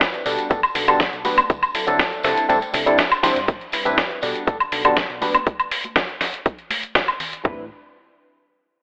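A straight 4/4 groove at 121 BPM drives this funky, nostalgic filtered disco house passage in A dorian. It pairs a punchy, layered electronic house kit of kick and toms with a gritty, compressed sampler-style soul kit of hi-hat, medium-tuned snare and woodblock, whose hats pump with sidechain, while close, dry tambourine and congas with hard hands sit in the background. Up front, a reedy, barky electric piano heard through its built-in speakers plays chords such as Gmaj7, D9 and Am11 with phaser, pumping and a low-pass filter, over a dark, round fingered electric bass that is also filtered and pumping; the kick drops out at 2.5 seconds, a drum fill and band accent land at 3.2 seconds, and a filter sweep begins at 3.5 seconds, the mix set in a lush hall reverb with a telephone-style sound.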